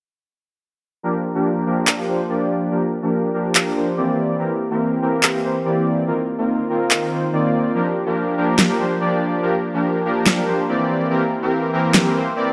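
A half-time groove in 4/4 drives this playful, lush future bass passage, with layered electronic handclaps and a huge, tape-warm snare sitting up front from 1.9 seconds. A soft, smooth supersaw built from detuned sawtooth unison voices carries the sustained riff from 1.0 seconds, shaped by a low-pass filter sweep and tape echo as the harmony moves through Bb6, C7 and F7sus4 chords. A lush hall reverb surrounds the whole passage, which is cut from a longer piece.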